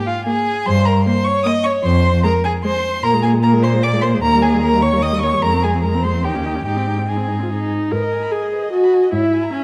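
A dark-toned violin carries the lively, spirited melody with vibrato, soft attacks and expressive portamento in this quick, rubato classical-period string quartet movement in 3/4 at 150 BPM in Ab major, over a rich, focused second violin line, a clear, close viola accompaniment and an up-front cello bass with its own expressive portamento entering at 0.7 seconds, all bowed in a wet recital hall, until a new section begins at 7.9 seconds.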